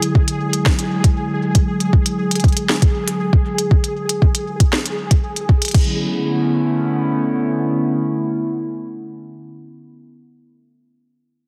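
A straight 4/4 groove at 118 BPM drives this intricate, melancholic IDM fragment in B dorian, built on a soft, up-front electronic kick and a glitchy kit of tiny snare, clicky hats and crash cymbal, all of which stop by 5.9 s. Above them a warbling, detuned pad holds dark, nostalgic chords from E9 to Bm11, with a filter sweep through the opening section, while a mellow gated texture pulses on G#4 under sidechain pumping. Chorus colours both synth parts, the pad sustains alone to 9.5 s, and the heavily compressed, radio-like sound sits in a lush hall reverb.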